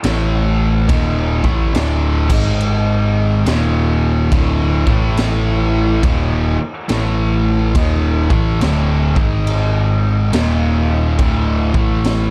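A small-room ambience frames this ominous, heavy stoner and doom metal excerpt, cut from a longer piece and moving at a slow 70 BPM in 4/4 with a swung eighth-note feel. Up front, a bright, double-tracked fuzz guitar plays a distorted, picked riff in a low register from D2 to A3. Beneath it, an overdriven picked electric bass growls between D1 and A1, amped and punchy. A raw, gritty and saturated garage drum kit fills the room with a punchy kick, a high-tuned snare and dark crash cymbals, its rolled-off top and pumping room adding weight. The power chords circle through A5, D5, G#5 and Eb5 across all 12.3 seconds, with the tense G#5 and Eb5 shifts giving the riff its menacing pull.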